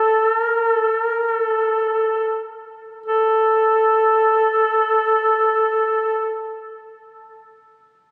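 In free time, a single warm duduk plays a mournful, solemn Caucasian folk line up front, slowing down over the first 3.1 seconds before moving into a second passage that runs to 6.5 seconds. Its soft attack and vibrato circle around A4, tuned slightly high to 441 Hz, in this short excerpt from a longer piece. The sound is a phone recording in a church-like space with a moderate reverb tail lasting about 4.1 seconds, plus a club reverb and compression.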